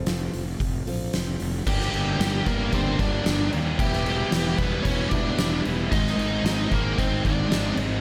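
A woody, old-stringed acoustic guitar opens this cathartic, dark quiet-loud alternative rock excerpt, picking arpeggios with slapback echo over growly fuzz bass and an oversized, low-tuned drum kit with a punchy kick, fat snare and dark cymbals that sits up front in a pumping stone room. At 1.7 seconds, after the acoustic stops at 1.5 seconds, the band surges in at 113 BPM: three very quiet riffing guitars (overdriven, sludgy distorted and a double-tracked fuzz), a faint flute-like tonewheel organ with key click and rotary speaker holding chords, and a bluesy, distorted lead guitar with slapback echo carrying the melody. The chords move from Gm through Em to Ab under light reverb.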